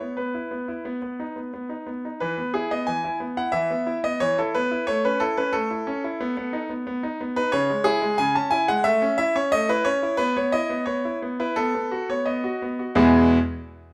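Elegant and graceful, this classical-period piano sonatina moves at 89 BPM in a straight 4/4 in E major, tuned to A4 = 442 Hz, with a solo concert grand that sounds brilliant, polished and up front, ranging from a deep bass at E2 up to A5 with long sustain. The harmony moves from E and B through A, B7 and C#m before settling on E at 13.0 seconds, and the tempo slows from 6.2 to 13.0 seconds in this passage cut from a longer piece. A moderate large-studio reverb surrounds the instrument.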